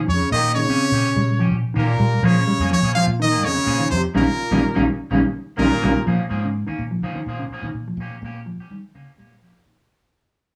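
Defiant and hypnotic, this afrobeat excerpt moves at 125 BPM in a straight 4/4, cut from a longer piece and set in a wet small room where the band plays live together. A brilliant, punchy trumpet carries the melody up front with vibrato and forceful, close-miked attack, while a tight trombone section supports it with a second line touched by light vibrato; both horns drop out at 6.0 seconds. A dark, clean electric guitar played with the fingers spins arpeggios through the whole span, and a fingered electric bass with an amped, warm tone anchors the low end. A twangy, picked electric guitar at the edge of break-up adds quieter stabs. The harmony alternates between Eb7/Bb and Bbm7, with a band accent from 4.2 seconds before the music fades out from 6.1 seconds.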